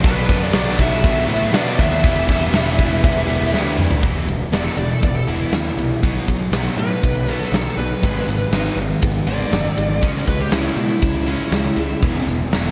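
A straight 4/4 pulse drives this brooding, angsty fragment of quiet-loud alternative rock, anchored by a huge arena drum kit up front with a punchy kick, bright cymbals and a pumping hall sound, beneath a growly electric bass thickened with fuzz and overdrive. Very quiet riff guitars sit underneath: a double-tracked overdriven electric that stops at 4.0 s, a high-gain distorted guitar and a thick fuzz guitar. A dark, bluesy lead guitar with distortion, slapback echo and digital delay carries the melody and breaks into a solo at 4.0 s, after a drum fill starting at 3.5 s. There a very quiet, warm fingerpicked steel-string acoustic adds arpeggios, all set in lush hall reverb with a big arena sound.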